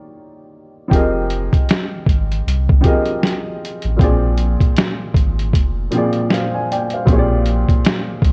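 A muffled, pitched-down sampler drum kit with a thumpy kick and medium-tuned snare sits up front in this hazy, melancholic lo-fi hip hop fragment from a longer piece, swinging its sixteenths over a round, sine-like sub bass. A woody upright piano, softened by a low-pass filter and given a short sustain, plays alone on an Ebmaj9 chord until drums and bass enter at 0.9 seconds, then moves through Fm11, Bb9 and Bb13. Light reverb and the worn warble of old cassette tape, with its drifting pitch, blur the whole mix.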